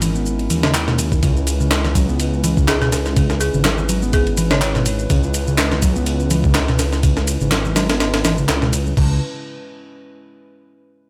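A playful, energetic breakbeat cut opens at 124 BPM with a gritty, compressed sampler-style kit up front, its thumpy kick and high-tuned snare riding over crash and ride, while a tape-warm garage kit adds handclaps, ride and shaker, and a rumbling detuned saw bass sits beside an amped, picked electric bass riff over a Dbm7 chord. A moody, nasal analog pad holds sustained chords in the background with chorus and sidechain pumping, and soft-handed congas enter very quietly at 1.9 s. From 2.7 s to 4.7 s a woody folk marimba struck with hard mallets plays a short, rustic melody through an AM radio filter and delay, all set in a digital ambience with a 16th-note swing.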